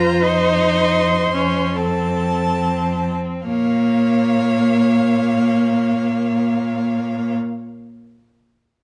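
This classical fragment, cut from a slow romantic movement for string quartet, carries an elegiac, melancholic mood in 4/4, with a freely breathing rubato that slows down through the opening 3.5 seconds. The first violin sings the melody with expressive vibrato and portamento, sounding somewhat distant, while the second violin traces a smooth, even second line above it in a higher register. The viola, the most up front of the four, supplies a focused, rich accompaniment, and the cello anchors the bass with its own portamento and expressive vibrato from further back. The harmony rests on F7 at the start and settles onto Bb minor at 3.5 seconds, and all four bowed parts play together until about 7.3 seconds. A wet stone room reverb wraps the ensemble in a resonant space.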